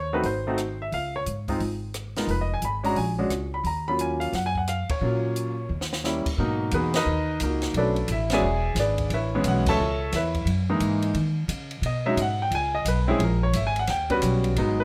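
A clear, up-front concert grand piano carries the melody over a woody, pizzicato upright bass from the first moment, with a compact cocktail drum kit joining at 0.2 seconds, its high-tuned snare, punchy kick, hi-hat, ride, crash and rim clicks sitting dry and natural beneath them. This moody, smoky swinging jazz trio fragment features band accents at 4.8, 6.9 and 9.6 seconds and a short drum fill at 5.7 seconds, shifting key at 6.4 seconds into a second passage of rich extended chords, all set in a moderate large-studio reverb.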